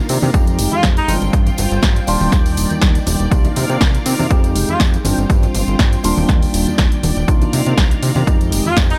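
Filtered disco house at 121 BPM in C minor, with a groovy, funky swing and sidechain pumping on everything but the kick and snare. An overdriven, up-front electronic kick anchors a punchy, dry drum machine on hi-hat and snare, while tambourine and congas sit in the background and a fat, detuned sawtooth bass moves under a clean tine electric piano with tremolo and phaser and a lush, mellow string machine with ensemble chorus, both carrying 12-bit sampler grit through Fm9, G7sus4, Ebmaj7 and Cm11. A tight, close-miked horn section adds brief melodic phrases at 0.7, 4.7 and 8.7 seconds, all set in light digital reverb in this excerpt from a longer piece.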